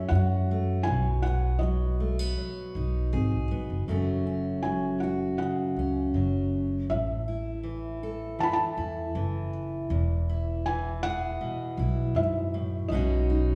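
Acoustic folk in a peaceful, pastoral mood, this short passage cut from a longer piece moves at an unhurried 80 BPM in a straight 4/4. A felt-muted upright piano carries the melody, its thick felt giving a soft, mellow, intimate tone with audible action noise. Beneath it, a fingerpicked steel-string acoustic guitar plays the accompaniment up front, sounding bright with fresh strings and finger squeak. A pizzicato upright bass sits close and prominent, woody and dark, anchoring the low end throughout. The harmony opens on F#m and B6, then after a shift at 3.9 seconds travels through F#m, A5 and E before settling on Badd9. The trio is heard in a reverberant recital hall, with a 1.6-second decay that lends the natural acoustic sound a spacious glow.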